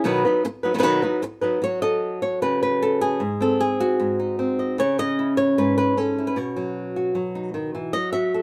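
A fingerpicked acoustic flamenco guitar plays alone and up front, its tone warm as it moves through B, F#m, G#, C#m and back to B, spanning G#2 to E5. This mournful, dramatic flamenco fragment, cut from a longer piece, runs at 152 BPM in a straight 4/4, tuned to A4 = 438 Hz. A short opening phrase gives way at 1.6 seconds to a longer passage, all set in a moderate studio reverb.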